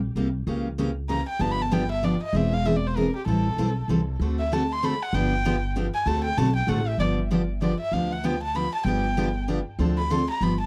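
A dry, close recording with a 1970s studio character and little reverb frames this charming, swinging bit of jazz manouche in 3/4, cut from a longer piece. A woody, thumpy pizzicato upright bass on gut strings and a full-bodied, picked jumbo steel-string acoustic guitar carry the accompaniment from the outset, while the erhu takes the solo melody from 1.1 s, intimate and airy-bowed with light vibrato, a soft attack, portamento and a touch of tape echo. The harmony moves through chords such as C#dim7, Eaug7 and Am7, and the repeated section settles on G7 before arriving at Dm7 at 9.8 s.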